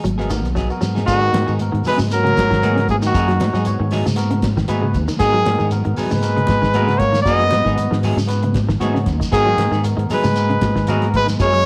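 Defiant and funky, this afrobeat passage, cut from a longer piece, rides a swung sixteenth-note feel over a G#m7 chord. A dry, cloth-damped drum kit with a fat snare and tight kick anchors the groove alongside a round, punchy fingered electric bass. A grainy shekere and bright, high-tuned congas sit distant in a large-room space, the congas very quiet. In the background, a clean picked electric guitar with analog chorus plays arpeggios, a hollow-body semi-hollow guitar adds stabs, and a barky, lightly overdriven tine electric piano with lush chorus fills in the accompaniment. After a drum fill from 0.6 to 1.1 seconds, an up-front trumpet with vibrato and a smooth top takes the melody at 1.1 seconds, joined by a close-miked trombone with slapback echo on a second line, all set in light reverb and small room ambience.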